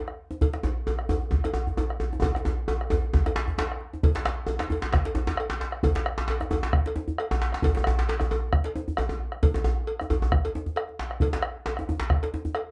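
A dark, warm recording set in a small room with a moderate ambience, this short cut from a longer West African drum ensemble piece feels earthy and festive, with a lightly swung sixteenth-note lilt in 4/4. A round, up-front bombo anchors the ensemble and sits loudest in the mix. Two djembes share the hand-drum work: one deep and warm with metal rattles, carrying a compressed, saturated edge, and the other tight and cracking, struck with hard hands, placed forward with its own live-room air and its own buzzing rattles. A metallic cowbell, also compressed and saturated, sits further back, entering at 0.4 seconds. A drum fill from 2.2 seconds leads into a new passage at 4.0 seconds that carries the ensemble to the close.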